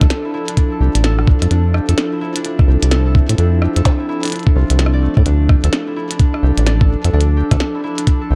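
From the first beat, this glitchy, melancholic IDM fragment in D minor sets a thumpy, gritty kick and a rubbery, resonant sawtooth acid bass up front at 128 BPM, with a 16th-note swing. A bright, ringing concert harp plays arpeggios through a digital delay, floating over a warbling, nostalgic lo-fi pad whose detuned sustained chords carry chorus, phaser and reverb and move from Dmadd9 to Fmaj7 and back. A glitchy electronic kit adds a tiny snare, rim clicks and clicky hats before the drums stop at 8.2 seconds, all within a dark, warm digital ambience.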